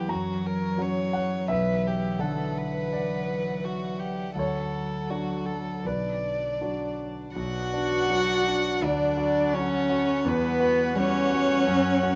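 The recording sits in a moderate studio reverb with an intimate, close sound, cut from a longer neoclassical piece for piano and strings in B minor at 83 BPM in 4/4, played with a rubato feel. A solo violin carries the melody up front, rich in tone with light vibrato, a soft attack and an airy, sul tasto bow, moving between F#4 and F#5. Beneath it a single cello plays a second line, dark and smooth-topped with vibrato, while a concert grand piano accompanies up front with deep bass, a natural tone and audible action noise. A chamber string section holds soft sustained chords in the background, and at 7.4 seconds a lone viola joins the accompaniment, warm and airy in its high register. The harmony moves from F# through B minor and D before settling on Emadd9 at 10.3 seconds, leaving a melancholic, longing mood.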